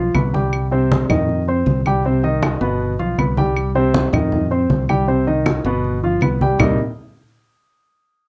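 A straight 4/4 groove at 158 BPM drives this sultry, sophisticated Afro-Cuban jazz passage in C harmonic minor, cut from a longer piece, with woody, close claves and low-tuned, thick-skinned congas played with soft hands. A punchy fingered electric bass holds the low end while an up-front grand piano with short sustain accompanies over chords moving between G7 and Cm, arriving on Cm9 at 6.6 seconds. A moderate club reverb gives the room a warm club sense of space.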